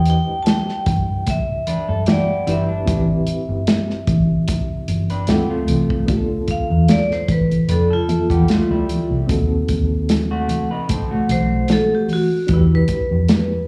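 Bittersweet and cinematic, this lush 1970s-style soul excerpt moves at a relaxed 75 BPM in 4/4 with a gentle swing, set in D dorian and tuned slightly below standard pitch. A bright vibraphone played with hard mallets carries the melody from the start, its metallic, ringing tone colored by a slow motor vibrato and slapback echo, and it takes a solo from 6.1 seconds as the harmony moves from Dm69 through B7b9/D# and back to Em7. Underneath, a reedy, worn electric piano, slightly out of tune and lightly overdriven, shimmers with fast tremolo through its built-in speakers, while a dark, foam-muted fingered bass sits up front with a round, punchy tone. The dry, muffled soul drum kit, with its tight kick and medium-tuned snare, sounds lo-fi and rolled-off on top, joined by thick-skinned congas in the background and a slightly broken-up, picked electric guitar riff entering at 1.7 seconds. The whole performance comes across like a live gig heard through a club's PA, with light reverb and small room ambience.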